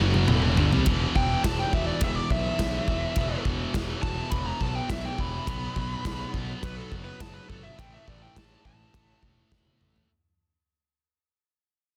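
Heavy metal with a dark, heavy mood, cut from a longer piece and moving in a straight four-beat feel. A heavy high-gain guitar and a scooped, bright high-gain guitar sitting in the background carry the distorted riff throughout, joined for the opening 0.9 seconds by an overdriven, double-tracked semi-hollow guitar. Beneath them, a picked electric bass thick with fuzz holds the low end, while a big, acoustic rock kit sits up front with a punchy kick, a medium-tuned snare, toms, a ride and bright cymbals, opening and closing with fills. At 1.2 seconds a dark, distorted lead guitar enters with a solo high above the riff, trailed by tape echo, and it plays until 9.2 seconds. The harmony moves from E minor to power chords on E, B and A, all within a dense, heavily limited modern master that fades out from 0.9 seconds onward.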